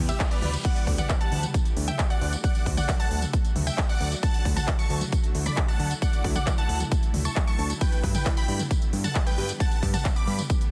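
A punchy, overdriven electronic kick sits up front and drives this euphoric, soaring uplifting trance excerpt at 134 BPM in 4/4, with a straight feel in D major. Beneath it, a fat analog bass in the D2 to G2 range adds thick, saturated, detuned sawtooth weight with sidechain pumping. A huge supersaw lead carries the melody between G4 and D6, its bright, compressed unison sawtooth tone coloured by phaser and tape echo and also pumping with the kick. An analog pluck plays a second line in the background, round and warbling with a vintage filter sweep, chorus and tape echo. A layered, overdriven big-room dance kit adds crash cymbal, handclaps, crisp hi-hats, tambourine and toms, while a reverse cymbal opens the passage from 0.0 to 0.6 seconds over an Em chord that moves to D at 0.6 seconds and to G at 7.8 seconds. Set in digital ambience, the whole mix arrives through a dense, heavily limited modern master.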